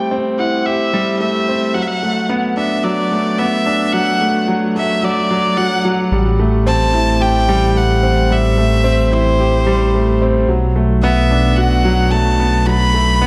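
A straight 4/4 pulse at 110 BPM drives this hypnotic, moving piano-and-strings electronica in A dorian, where a polished baby grand riff with delay and a nasal, airy-bowed solo violin melody behind a low-pass filter move through Am7 and Bm7 during a build-up until a deep, rumbling detuned saw bass arrives at 6.1 seconds for the drop, all set in a dark production with a wet scoring-stage reverb.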